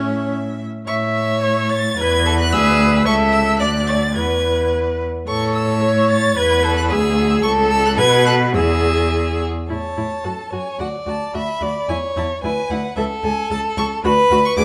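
In a quick, rubato 2/4 at 110 BPM, this lively, spirited classical-period movement for string quartet in A major sets a bowed first violin with a clear, distant tone singing the high melody over a rich second violin line, a focused viola accompaniment and a smooth, even cello bass, all with vibrato and carried by the reverb of a recital hall, before turning to a new section at 9.7 s in this fragment cut from a longer piece.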